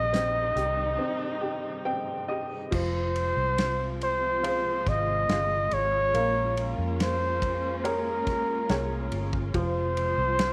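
Melancholic and heartbroken, this short pop ballad excerpt moves at a slow 70 BPM in straight 4/4, set in F minor with a slightly low tuning. A breathy, whispered flugelhorn carries the melody up front, its soft attack and vibrato giving the line an intimate, jazz-style tone. Beneath it, a clear but worn upright piano, woody and slightly detuned with short sustain, provides accompaniment and plays a fill from 1.4 to 2.7 seconds within a break that begins at 1.0 seconds. A studio string section holds sustained bowed chords with expressive portamento and a smooth top, while a dark, round, foam-muted electric bass anchors the low end and an acoustic drum kit with dark cymbals and a punchy kick enters at 0.1 seconds. Light studio reverb surrounds the parts as the harmony shifts from Cm to Fm at 2.7 seconds, then through Bbm7 back to Fm.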